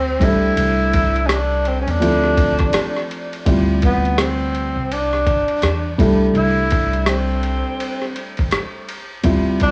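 A breathy, whispered tenor saxophone carries the melody from the start of this smoky, mellow jazz-hop excerpt at 83 BPM, its subtone vibrato and scooped notes colored by cassette tape and tape echo, over a dark, short-sustained concert grand piano and a woody pizzicato upright bass moving through C6, Dm9 and Dm11. At 0.2 seconds a dusty, sampler-style drum kit enters up front with a thumpy kick, hi-hat, ride and rim clicks, gritty with overdrive and cassette tape, setting a 16th-note swing. The whole piece sits in a light, small-room ambience with the intimate feel of a home cassette recording.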